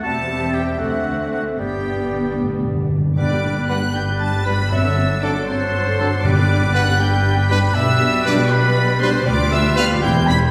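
In a lilting 6/8, this graceful, lively classical-period orchestral passage, cut from a longer piece, has a violin section carrying the melody up high with expressive vibrato and portamento, while a second, richer violin section, an airy metal flute, a soft-attacked oboe and a bright, vintage clarinet weave supporting lines in the background. A clear bassoon and lush violas fill in the accompaniment, a dark French horn section holds sustained chords, and smooth cellos pair with the double basses in a full bass. Round timpani on soft mallets enter with a fill at 1.6 s, a trumpet adds stabs from 3.7 s, and the orchestra is heard from further back in a wet scoring-stage reverb.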